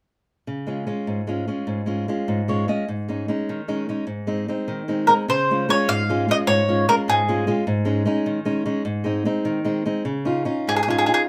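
Heard up close in a small, moderately reverberant room, this short passage cut from a longer Italian folk serenade has a sunny, romantic glow. A nylon-string guitar with fresh strings and a small, fingerpicked tone carries the accompaniment from the opening in a lilting 6/8, moving through gentle chord changes and adding a brief fill just before the 3-second mark. A bowl-back mandolin, picked on its doubled strings and sitting a little louder than the guitar, enters with the melody at 5.1 seconds, just before the second section begins. After a short rest, the mandolin returns for a final phrase near 10.7 seconds. The guitar closes the passage on a colored tonic chord.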